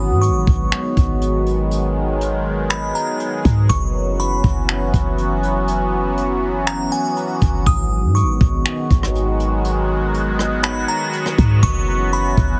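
An up-front, detuned sawtooth pad with resonant, wave-folded edges, chorus, phaser and sidechain pumping holds sustained chords through this ethereal, spacious cloud-rap excerpt at 121 BPM in a half-time feel in G# minor, while a crystalline FM synth bell sings a melody through chorus, phaser and delay, a clean, sine-based 808-style bass adds deep, dark weight, and a jazz brush kit of finger snaps, hi-hat, boomy kick and rim clicks sits in an airy small room, the track carrying a heavily compressed radio sound over G#m7 and F#7sus4 chords.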